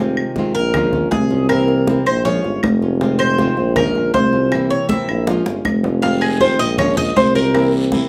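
Latin Cuban son in the guajira style at 159 BPM in F minor, danceable and nostalgic, this short cut from a longer piece features an up-front Cuban tres with metallic double strings soloing in picked arpeggios over a punchy, vintage tuba bass, a bright fingerpicked flamenco guitar, thin-skinned high-tuned congas, tight background bongos and woody claves, with a drum fill at 5.3 seconds before a raspy guiro joins at 6.0 seconds, all in a band playing live in one room with light reverb over a cycling Fm7, Bbm7, C7 progression.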